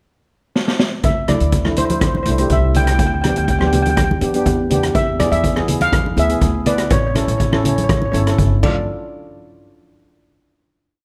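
A straight 4/4 calypso groove at 122 BPM sets a brooding, cool mood in D dorian: a street-band drum kit opens with a fill at 0.6 seconds, its high-tuned snare and boomy kick up front, and growly pizzicato upright bass joins at 1.0 seconds with a syncopated figure. A bright, close-miked lead steel pan carries a free-roaming melody, while a mellow double-seconds pan adds soft triad chords and thick-skinned congas keep a loose pattern in the background, captured with close, detailed microphones and light reverb. The brief piece moves through a single verse over Dsus2, G/D, E and A, then settles on Dm before a final hit at 8.9 seconds.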